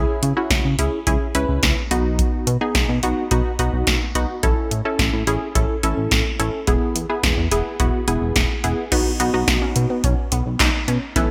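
A straight 4/4 groove at 107 BPM comes from an up-front analog electro drum machine, with a deep kick, punchy snare, metallic hi-hats, handclaps and crash cymbal dressed in gated reverb, driving this cool synth-pop fragment of a longer piece. A glossy, chorused pulse-wave synth bass and a funky, detuned sawtooth polysynth comp carry the C#m, B, A, E progression. At 8.9 seconds, on a move to B, a lush unison pluck enters with arpeggios through phaser and digital delay, all set in bright 1980s-style digital production with moderate plate reverb.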